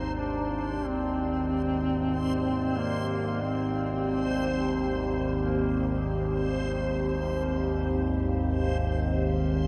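Dark ambient drone at 46 BPM, ominous and desolate, built on a resonant sawtooth-and-sine drone with moving overtones sitting up front, a deep, detuned analog pad holding a C minor add9 chord, a bright, reversed granular texture, barely audible bronze carillon bells in arpeggios, and a distant, roomy duduk with vibrato and scooped notes singing a folk-style melody through diffuse delay until 6.0 seconds, all set in a huge, wet reverb.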